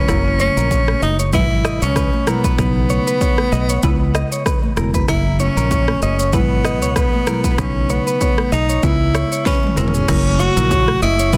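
Breezy and joyful, this afrobeats excerpt at 96 BPM in F# mixolydian sets a breathy, vibrato-laden tenor saxophone out front over a fingered electric bass, a bright clean electric guitar riff bathed in spring reverb and tape echo, a buzzing, woody marimba, an overdriven deep house drum kit with a punchy kick and fat snare that plays a fill from 9.5 to 10.1 seconds, and very quiet, distant congas, all cycling through F#7, Eadd9/G#, Badd9 and C#m7 in a dense, heavily limited modern mix.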